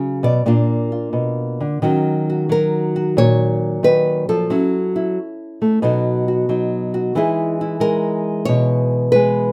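A small, up-front, fingerpicked nylon-string guitar plays this cool, moody solo jazz fragment from a longer piece alone at 90 BPM in 4/4 with a loose rubato swing, opening on Bb before moving at 1.8 seconds through Ebm7, Gbm7 and B7 to settle on Emaj7 at 7.2 seconds, all in a rough home-demo mix with moderate studio reverb.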